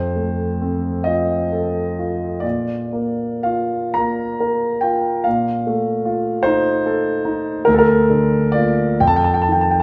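A concert grand piano, up front with a deep bass, open tone and long sustain, carries this dreamy, nostalgic romantic nocturne alone in a short extract cut from a longer piece. Set in Bb major and 6/8 with a rubato feel, it drifts slowly at around 37-51 dotted-quarter beats per minute, ranging from D2 to Bb5 as the harmony moves from F through Bb and F7/Bb to Bb/D before settling on F7 near 9.0 seconds. A moderate recital hall reverb surrounds the instrument, lending a gentle sense of space.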